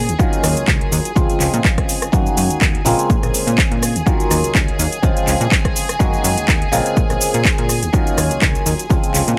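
Filtered disco house at 124 BPM with a funky, groovy 16th-note swing: a punchy, overdriven electronic kick sits up front beside a layered house kit of handclaps, metallic hats, rim click and shaker, its percussion and hats pumping with sidechain, while a plucky sawtooth-and-square analog bass, a stringy, percussive clav with phaser and vintage 12-bit sampler grit, and a distant, reedy violin section holding dark sustained chords cycle through Ebm9, Dbmaj7, Gb69 and Bbm9 in a dry, gritty hardware-recorded cut from a longer piece.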